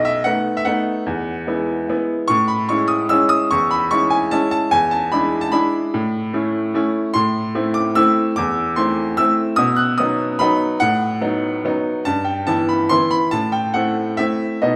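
A classical piano waltz in 3/4, elegant and bittersweet, moving at roughly 134-155 BPM with a flexible rubato feel. A solo baby grand piano, brilliant and up front, spans from B1 to F#6 across this 14.8-second excerpt, with harmonies moving from B7 and E through Amaj7, A and Am before settling on Em/G and Am. The playing sits in a wet recital hall reverb with a 1.5-second decay.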